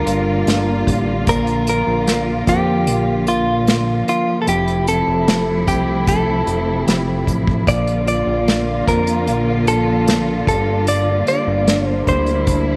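A straight 4/4 pulse at 75 BPM carries this hopeful, emotional pop ballad, with an up-front acoustic drum kit played with bundle sticks and a punchy kick, a fat, detuned analog bass, a clean tine electric piano in the background, and dark, lush bowed strings with vibrato sustaining chords through Gm7, Bb and Fmaj7, while a picked, compressed electric guitar recorded direct carries the melody up front with slapback echo, all set in a studio ambience with light reverb.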